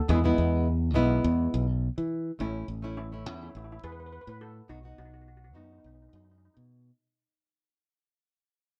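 A shimmering, metallic steel pan opens this sunny, carefree calypso excerpt at 104 BPM in 4/4 with a light swing, playing the melody well below the rest of the band in the mix. A full-bodied, fingerpicked nylon-string guitar sits up front with the accompaniment, and a punchy, bright fingered electric bass drives the low end through chords of E, A and B. The band sounds as if it is playing together in one room with a moderate studio reverb, and the whole clip fades out across its 7 seconds, as it is cut from a longer piece.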